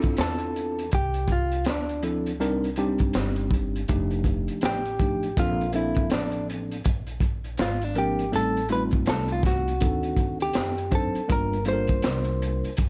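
A small-room sound with a saturated, gritty breakbeat kit set up front, its high-tuned snare and punchy kick softened by a rolled-off top, frames this cool, smoky jazz-hop excerpt in D minor at 81 BPM with a 16th-note swing. A worn, slightly out-of-tune tine electric piano and a woody pizzicato upright bass carry the Dm9-Cm9-F13-Bbmaj9 changes into Am7b5, D7b9 and Gm7. From 0.2 s a clean, compressed hollow-body jazz guitar, fingered and dark, plays the solo melody up front.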